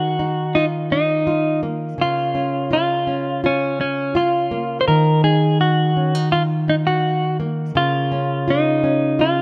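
In a straight 4/4 at 83 BPM, this reflective, wistful acoustic pop passage in Bb minor pairs a full-bodied, fingerpicked nylon-string guitar, with its deep classical tone and audible finger squeak, against a dark, compressed and scooped clean electric guitar carrying the melody, both up front in light reverb as the harmony moves between Ebmadd9 and Bbm/Db.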